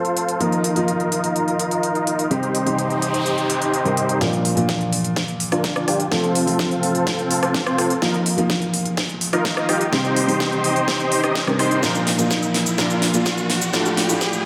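A dreamy, reverb-soaked mix opens this triumphant, euphoric festival progressive house excerpt in Bb major at 126 BPM, where a huge, detuned supersaw riff and a dark, boxy baby grand piano with audible action noise both pump against the sidechain and trail tape echo over crisp hats and a huge snare, before a noise sweep arrives at 2.8 seconds and a punchy background kick enters at 4.2 seconds to launch a build-up with a drum fill, a riser and a filter sweep on the supersaw, as the chords cycle through Ebsus2, Cm, Bb and F.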